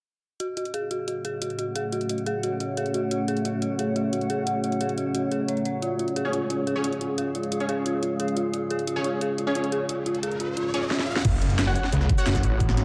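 A straight 4/4 drum and bass kit of overdriven cracking snare, bright hats, cabasa and crash cymbal drives this dark, futuristic slice of technical drum and bass, where a deep, warbling ambient pad holds sustained chords, an eerie, inharmonic FM bell spins delayed arpeggios and a cloudy granular pad drifts in soaking reverb, until bold, phased orchestra-hit-like stabs arrive at 6.2 seconds, an electronic riser and impact build toward the drop at 11.2 seconds, and a snarling, growling distorted saw bass lands with a knocking overdriven kick.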